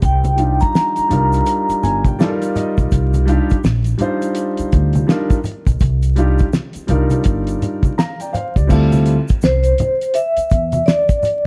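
A dark, warm production with studio reverb and a layer of vinyl crackle sets a cool, nocturnal tone for this short cut from a longer jazz-hop track. A cloth-damped drum kit sits up front with a thuddy, dry sound, a fat snare, a tight kick and dulled cymbals, while a woody pizzicato upright bass holds the low end beside it. Soft-handed congas and an egg shaker add a bright, close texture further back, and the swung groove carries a relaxed hip hop feel. A mellow vibraphone played with soft mallets rings out with a medium motor vibrato at the start and is joined at 0.4 seconds by a dark, vintage-toned baby grand piano with long sustain, which plays a fill at 1.5 seconds and comprises the accompaniment until 9.2 seconds. After the harmony moves from Cm11 to Dm11 at 8.7 seconds, the vibraphone returns at 9.4 seconds, closing the passage on its metallic shimmer.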